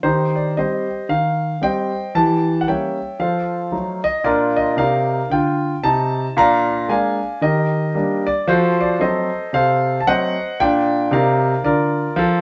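A wet studio reverb surrounds this short cut from a longer piece, and the playing has the natural, intimate feel of a live performance in a single room. It is playful, swinging stride piano jazz in 4/4, with a lilting swing on the eighth notes. A grand piano plays alone and up front from 0.0 to 12.4 seconds, covering Bb2 to Bb5 with a long sustain and audible action noise that brings the listener close to the instrument. The passage moves through a single section whose harmony begins on Cm/Eb, passes through Edim7 and F7b9, and settles on Bb, then heads through Bb7 and Ebmaj7 before returning by way of F7b9 to Bb at 10.6 seconds. The result is a brief, buoyant solo statement with a cozy, close-up presence.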